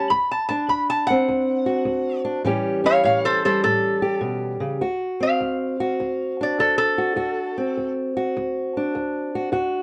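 A lap resonator guitar leads this rollicking, swaggering stretch of acoustic country blues, its metallic, nasal slide melody played with fingerpicks and a steel bar and sitting up front from the start until 7.9 seconds. Beneath it, a fingerpicked old ladder-braced acoustic guitar carries the accompaniment through to 9.8 seconds, its old strings giving a dark, woody, boxy tone that sits equally close. The swung 4/4 feel gives the pair an easy strut as the harmony moves from D7 to A7 and back to D7 at 4.8 seconds, where the opening section repeats. Close, detailed microphones and a touch of light reverb keep both guitars intimate and clear. The passage is cut from a longer piece.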